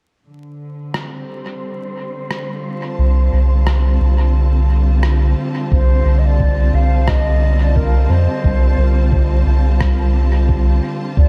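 This deep, spacious slice of ambient dub, lifted from a longer piece, opens at 0.3 s on a lush, bowed symphonic string section holding a sustained Csus2 chord, its soft attack and expressive vibrato sitting close and warm. An airy, breathy wind-like noise layer drifts in high above with its own built-in reverb, while a muffled, sampler-style rim click, re-recorded in a large room and thrown into dub echo, marks the unhurried 88 BPM pulse with a 16th-note swing. At 3.0 s a round, soft sub bass arrives up front, deep and sustained beneath everything. From 5.7 s a hollow, pure concert flute takes the melody with tongued notes and warm vibrato, its phrases also trailing dub echo, as a thumpy, pitched-down kick drum settles into the background. Vinyl crackle and light reverb frame the mix, and the whole piece is tuned slightly flat to A4 = 438 Hz.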